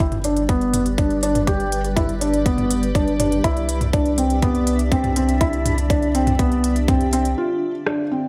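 Piano and strings electronica at 122 BPM in a straight 4/4, intimate and hypnotic, with a soft, thick-felt upright piano riff carrying delay up front over a round, nasal analog bass that pumps with sidechain, moving through G, Cadd9 and Dm7. From 0.3 seconds a cloudy, blurred granular pad sustains chords with slow attack and its own built-in reverb. A tight, overdriven electronic kick sits up front while an overdriven electronic kit adds crisp hats, rim clicks and low-passed toms, all within a moderate recital hall reverb, in a passage cut from a longer piece.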